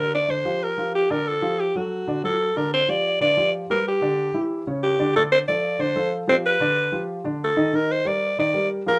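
Jazz in G minor at 185 BPM, danceable and sophisticated, this brief cut from a longer piece features a growling, raspy alto saxophone with vibrato and scooped notes carrying the melody up front over a dark, mellow baby grand piano whose audible action noise and short sustain lend an intimate feel, the two playing together throughout a moderate studio ambience as the harmony moves from Bb6 and D into a new section at 2.6 seconds that passes through Em7, C#dim and G7b13 before reaching Ebmaj9.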